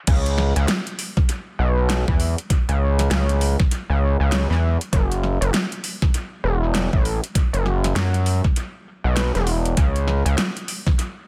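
A gritty, driven synth bass anchors this funky, playful glitch hop excerpt, its nasal, saturated sawtooth tone carrying oscillator sync, a sine layer and a filter sweep, with a fast attack and a decaying tail. Sitting up front and high-pass filtered, the bass moves between E1 and F#2 in C# minor and drops out at 10.4 seconds. The tempo is 99 BPM in 4/4, with a 61% swing on the sixteenths. An electronic kick drum knocks in the foreground, layered and high-pass filtered with studio reverb, while a tape-warm dubstep kit sits lower in the mix, adding a huge snare, metallic hi-hats and crash cymbal soaked in dub echo and studio reverb. The whole passage plays as a drop, with the mix kept fairly dry overall yet heavy on echo, and the kit carries on until 11.1 seconds.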